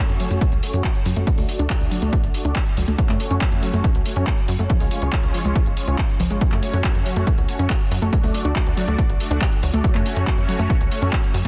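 Soaring and emotional, this short uplifting trance cut at 140 BPM in F# harmonic minor sets a filtered, detuned supersaw swell holding sustained chords through a phaser and sweeping filter over a tight, wave-folded sequencer bass, a lush unison pluck spinning gritty, delayed arpeggios under its own filter sweep, a punchy analog drum machine's handclaps and hi-hat, and a tape-warm electronic kick up front from 0.4 s, with the bass, pluck and swell pumping to the sidechain across a dry, dense, heavily limited mix moving through F#m, D and C#.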